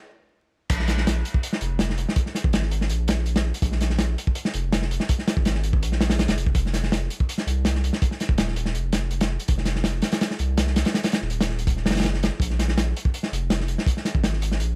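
A brief pause opens this excerpt from a longer drum and bass piece, before a jungle drop lands at 0.7 seconds with drums and bass arriving together at 164 BPM in a straight 4/4. The mood is dark and nostalgic, carried by a crunchy acoustic breakbeat kit that sits up front, its small-room sound gritty and saturated with a rolled-off top. A tight kick and a medium-tuned snare drive the break, while hi-hat and crash cymbal stay dusky and smooth, with high-pass filtering shaping the kick, hats, cymbals, snare and room. Beneath it, a deep, thick sine sub bass with a fast attack holds long, sustained notes between Eb1 and C2, its tone fattened by saturation. Vinyl crackle colours the whole recording, and the dry mix, with little reverb, keeps the groove close and intimate until the drums end at 14.7 seconds and the bass at 14.8 seconds.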